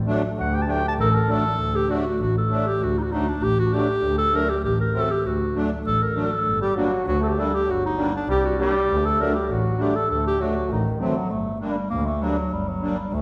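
A bowed double bass with a rich, floating tone opens this bittersweet, festive klezmer excerpt in 2/4, joined almost at once by a shimmering, reedy musette accordion and a classical-style clarinet that carries the melody up front. A bright, distant trombone adds a second line briefly at the start and returns from 6.6 to 11.3 seconds as the harmony moves between D and G minor. The whole is bathed in the wet reverb of a recital hall, and the passage is cut from a longer piece.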